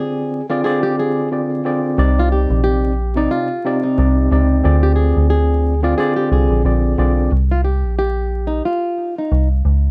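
A fingerpicked, boxy flamenco guitar melody with fresh strings and audible finger squeak opens alongside a worn, slightly out-of-tune tine electric piano that sounds lightly overdriven and cassette-tinged, as if through built-in speakers, before a decaying, fast-attack FM bass with a digital, metallic edge enters at 2.0 seconds in this tough, reflective, swung hip hop excerpt, where the piano drops out at 7.3 seconds and a dark production with light reverb and vinyl crackle frames all three up-front parts.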